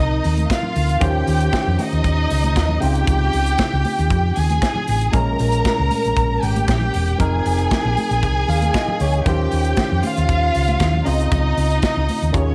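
A round, dark hollow-body bass sits up front in this driving, danceable disco excerpt at 116 BPM, joined by a lush, vibrato-rich violin section carrying a second line and a gritty, barky overdriven electric piano through a combo amp. A modern studio kit with a tight kick and medium-tuned snare enters at 0.2 seconds alongside very quiet, damped, high-tuned congas, all set in light reverb and small room ambience. The harmony circles F7sus4, Eb13, Dbmaj9 and Bbm7, and the electric piano plays a fill from 8.2 to 9.3 seconds.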